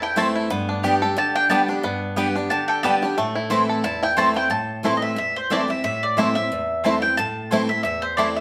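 Haunting and rustic, this swung bluegrass passage in A minor at 180 BPM, cut from a longer piece, puts a mellow, round mandolin up front on the melody with a solo in its first 4.5 seconds, while a bright dreadnought guitar picks the accompaniment, a twangy, percussive banjo plays fingerpicked arpeggios, and a second, woody mandolin adds stabs over Am and G chords, all sounding like a band playing live in one room wrapped in a wet studio reverb.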